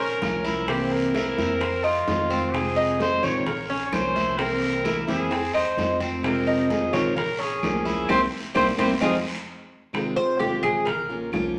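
Cuban son with a guajira lilt, this danceable, straight-feel excerpt moves at 130 BPM in F minor, cycling through Bbm, C7 and Fm7 in a large, wet studio reverb. A punchy, vibrato-laden trumpet carries the melody up front until 9.1 s, beside metallic double-strung tres arpeggios, while a boxy picked acoustic guitar with finger squeak, a growly, thumpy pizzicato upright bass, tight saturated bongos, woody claves, bright high-tuned congas and a raspy, distant guiro fill out the groove. After a band accent beginning at 8.1 s, the tres takes a short solo from 9.9 s.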